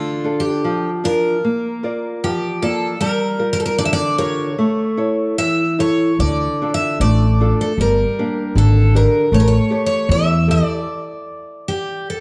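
The recording sounds dark and warm, set in a moderate recital-hall reverb that lends the close, up-front instruments a gentle halo. This mournful, passionate fado-style ballad moves freely in rubato around 76 BPM in 2/4, in D harmonic minor, and is cut from a longer piece. A picked twelve-string acoustic guitar carries the melody, its shimmering, octave-doubled tone bright and full-bodied, with an audible finger squeak. Beneath it, a small-sounding fingerpicked nylon-string guitar supplies the accompaniment through a progression from Dm to Bb, Gm7 and A, then Dm, Gm and A7. A pizzicato upright bass with steel strings enters at 6.2 seconds, adding a woody, thumpy low end. Near 10.9 seconds the harmony breaks off, and the twelve-string rings on alone to the close.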